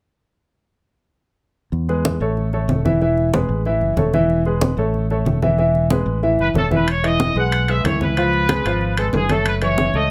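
A punchy, vintage-toned trumpet section with vibrato carries the melody up front from 6.4 s, lifting this festive, danceable salsa excerpt as the harmony shifts from alternating E and A chords to Emaj7, C#7 and F#m7. Underneath, a round, dark fingered electric bass and low-tuned congas played with soft hands start at 1.7 s, joined almost at once by a clear, present grand piano. Ringing metal-shell timbales enter at 6.9 s, and a moderate studio ambience surrounds the band.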